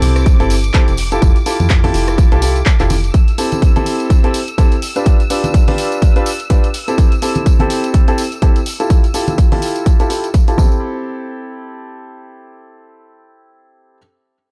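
A layered, up-front electronic kick anchors this soulful, energetic piano house excerpt. A clear, intimate grand piano riff, with audible action noise, tape echo, sidechain pumping and a filter sweep, runs until 14.0 seconds. A dark, plucky sawtooth bass plays only until 3.1 seconds, while punchy analog drum-machine handclaps, hi-hat and rim click mix with saturated, soft-handed tambourine and congas. Behind them, an expressive bowed violin section holds vibrato chords over Fmaj9, Am7 and C6 harmony until 10.6 seconds.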